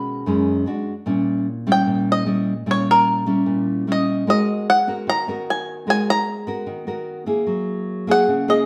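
A straight 4/4 bossa nova groove carries this romantic, breezy fragment, with a twangy, percussive bluegrass banjo played with fingerpicks singing the melody up front over a fingerpicked, classical nylon-string guitar accompaniment, its finger squeaks audible, as the two play live together in a stone room's reverb through chords moving from B69 and D to D#7b9/A#, G#m9 and F#9.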